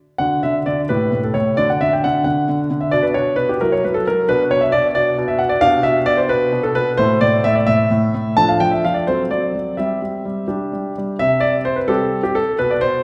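Swaying in a lilting 6/8 at 87 BPM counted in dotted quarters, this short classical-period piano sonatina excerpt moves with a flexible, rubato feel that sounds graceful and playful. A solo grand piano carries everything from 0.2 to 13.0 seconds, ranging from A2 up to A5, with a clear, intimate, up-front tone and natural character in which the action noise of the instrument is audible. The music opens in D major, passing through chords such as Bm and a colorful F#7#9, then shifts to C major from 5.6 seconds with harmonies including G/B, Dm/F and D7/F#. A second section begins at 11.2 seconds and settles on C5 as this fragment of a longer piece closes. The piano sits in a wet recital hall reverb, its ambience suggesting a church or concert hall.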